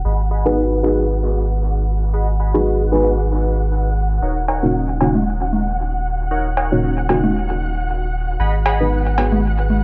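Meditative and hypnotic, this dub techno excerpt moves at 115 BPM in 4/4 with a light 16th-note swing, its up-front round sub bass and deep, dark chord stabs, thickened with chorus, phaser and dub echo, cycling through Abm7 and Ebm7 beneath a filter sweep. Above them sit faint, warbling lo-fi synth keys with ring modulation, chorus and dub echo, and a flickering, grainy texture holding a single high note in its own reverb. At 4.5 seconds, overdriven analog cowbell and congas with dub echo enter, and the whole piece sits in light digital ambience with a muted, filtered top end.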